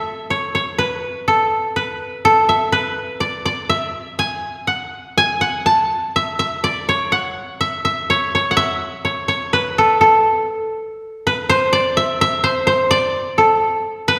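In a loose, rubato 3/4 at 124 BPM, this jolly, festive alpine folk piece in A major is carried by a solo koto playing from start to finish across its 14.2 seconds, ranging from A3 to A5. The koto is plucked with fingerpicks and sits up front with a mellow, woody tone, while the church or concert hall setting adds a lush scoring-stage reverb. A new section begins at 11.5 seconds before this short excerpt cuts off mid-piece.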